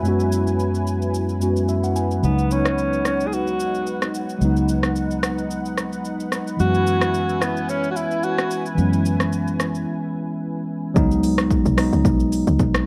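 Late-night and deep, this amapiano excerpt rests on a mellow, clean tine electric piano and a smooth, detuned sawtooth pad with chorus, joined by an up-front deep house kit of punchy kick, smooth hi-hat, rim click and shaker, the whole mix coloured by worn, warbling cassette tape and light reverb. After a short electric piano fill, a breathy alto saxophone with light vibrato carries the melody through low-pass filtering and delay from 2.2 seconds, over a round, foam-muted fingered electric bass. At the drop at 11.0 seconds, a tight, percussive FM log drum bass arrives with a fast attack and decaying tail.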